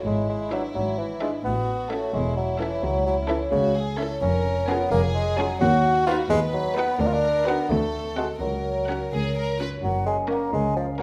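A mischievous, magical cinematic fragment in 6/8 opens with soft-attack, sul tasto violins carrying the melody over bright, ringing harp arpeggios in the background, soon joined by an up-front bassoon, smooth double basses, cellos with expressive portamento, a second violin line and focused violas in a moderate recital-hall reverb, before a mellow, hollow flute and warm French horn chords enter at 9.8 s.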